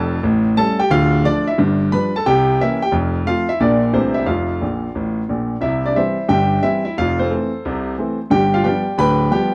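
A smooth, vintage-toned grand piano sits up front and plays alone from start to finish in this swinging, playful stride jazz performance, a short cut taken from a longer piece. Set in a brisk 4/4 with a strong swing on the eighth notes, the piano ranges from deep bass notes up into its upper register. The opening passage moves through a lively chain of dominant and minor chords before settling, and a piano fill at 4.6 s leads into a new section at 5.6 s. From there, the harmony brightens through a major seventh chord before turning back toward a dominant chord as the recording ends at 9.5 s. A moderate spring reverb surrounds the warm piano with a gentle sense of space.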